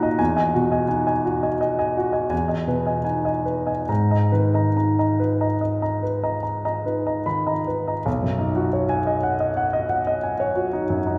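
Bathed in a wet recital-hall reverb and heard from further back in the room, this nocturnal, wistful fragment of a longer impressionist classical piece features a clear, intimate solo grand piano with audible action noise, played rubato in 5/4 at around 68-92 BPM across a range from B1 to B5, drifting through Emaj9, Emaj7 and G#madd9 before moving into a new section at 8.1 seconds on a B69 chord.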